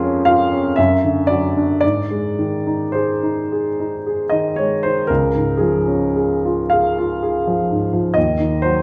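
A smooth, vintage-toned grand piano sits up front in a wet recital hall reverb, playing a nostalgic, tender romantic nocturne in Db major at a slow, rubato 51-64 BPM in 3/4, spanning Db2 to F5 and moving from Db/F through D/F# and Ab to Db before this short fragment of a longer piece settles on a rootless Ab7/Eb at 8.2 seconds.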